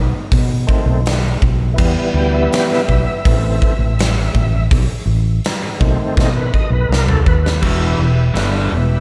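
Blues rock power trio with a southern rock edge, this smoky, gritty excerpt moves at a steady, straight four-four, built around a dark, growly fretless bass and a big, roomy arena drum kit with a punchy kick, medium-tuned snare, crash, hi-hat and toms, all sitting up front in a lush hall. An overdriven tonewheel organ carries the spotlight with sustained chords, thick with key click, percussive second harmonic, chorus vibrato and a slow rotary speaker, cycling through B7b9, Em and Am before a drum fill from 6.2 seconds. At 7.6 seconds a cranked, bright, double-tracked stack guitar crashes in with a picked, overdriven riff over an Em chord.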